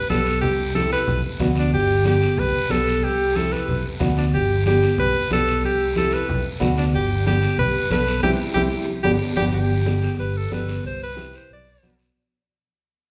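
A festive, danceable cumbia groove at 184 BPM in G major carries a bright, up-front alto saxophone melody with light vibrato over woody upright piano, a round, amped fingered electric bass, low-tuned congas in the background and a raspy guiro, all set in a wet recital hall reverb, with a band accent at 8.2 seconds before a fade-out from 9.5 seconds ends this section cut from a longer piece.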